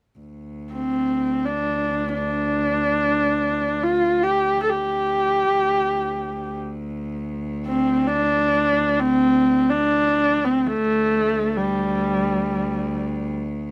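Close, detailed microphones and a light reverb give this short passage from a longer Mongolian folk piece an intimate, immediate sound. The music unfolds in free time, and its mood is windswept and solemn. A single bowed cello holds a low drone on D2 beneath the melody, with a clear, focused tone and vibrato. The horsehead fiddle enters at 0.7 seconds, played by one bowed player on horsehair strings, and carries the tune between G3 and A4 in a husky voice, with vibrato and portamento. Placed up front, the fiddle leads until 13.3 seconds, and the cello drone sounds on until 13.7 seconds.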